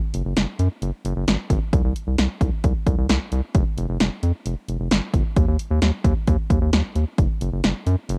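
A dry, overdriven analog drum machine drives this upbeat, nostalgic synth-pop fragment, its punchy kick and snare sitting up front alongside hi-hat from 0.1 s to the cut at 8.2 s. Alongside it, an analog bass built from square and sine waves with wave-folding delivers a round, deep tone that keeps evolving, each note arriving with a fast attack and then sustaining. The bass stays mellow and close in the mix, moving between F1 and Gb2 in a straight 4/4 feel. With little reverb and the intimate grain of a home cassette recording tuned to A4 = 438 Hz, the pair sounds immediate and a touch lo-fi across this single section of a longer piece.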